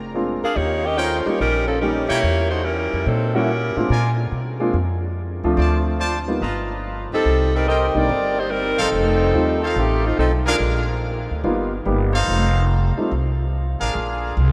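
Drenched in cathedral reverb, this swinging, brassy and joyful jazz passage rings out in a vast, echoing space. A woody, thumpy pizzicato upright bass and a polished grand piano carry the changes, while an up-front saxophone section, smooth with light vibrato, sings the melody in two phrases, the second beginning at 7.1 seconds, and a bright trumpet section adds soft-edged stabs. At 13.9 seconds the saxophones return on tight, vintage sustained chords, closing this section cut from a longer piece.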